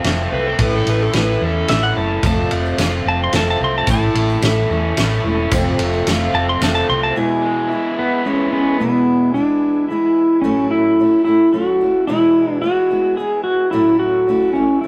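A rough rehearsal-room recording with tube saturation and a wet, short ambience frames this jangly, open-road blend of folk rock and heartland rock in a straight 3/4, cut from a longer piece. Up front, a clean, compressed pedal steel guitar played with fingerpicks carries the melody and takes a solo through the first 8.8 seconds, its slide and volume swells moving over chords that shift between F, A and E. Beneath it, a picked steel-string acoustic guitar with fresh strings keeps up the accompaniment, while a bright, double-tracked garage guitar grinds out an overdriven riff, and a smooth tonewheel organ sits very quietly underneath, holding sustained chords through a slow rotary speaker and chorus vibrato. A dark, round hollow-body bass and a loose, gritty drum kit with a fat snare, punchy kick, ride cymbal and rolled-off top drive the opening, joined by a very quiet, jingly tambourine and a brief overdriven slide guitar line near the start. 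The bass drops out at 7.1 seconds and the garage guitar at 8.8 seconds, leaving the pedal steel, acoustic guitar and organ to carry the closing stretch over A6 and E chords.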